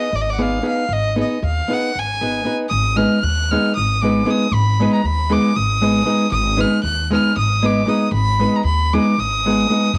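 A home cassette recording in a moderately reverberant room opens on this fiery, bittersweet fragment of a Balkan wedding-band tune, cut from a longer piece and set at 232 BPM in 7/8, in Ab dorian sharp4 over an Ab minor chord, with a new section arriving at 2.7 s. Up front, a single nasal, earthy violin carries the melody with light vibrato and an airy bow, while a bright, fingerpicked nylon-string guitar with fresh strings supplies accompaniment; both share a cassette-tape grit and plate reverb. Also up front, a woody, thumpy pizzicato upright bass anchors the low end.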